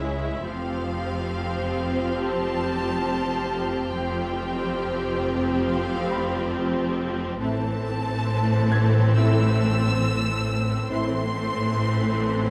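A lush bowed violin melody with vibrato sings over a soft-attack second violin line, focused, distant violas, expressive cellos and rich double basses, while mellow French horns hold sustained chords in the background and a faint high violin texture takes over from a bright, brilliant piano after its brief opening, with the piano returning at 6.1 seconds. All of it is set in a moderate recital hall reverb as the harmony moves from Fsus2 to Am at 7.4 seconds in this tense, eerie cinematic passage.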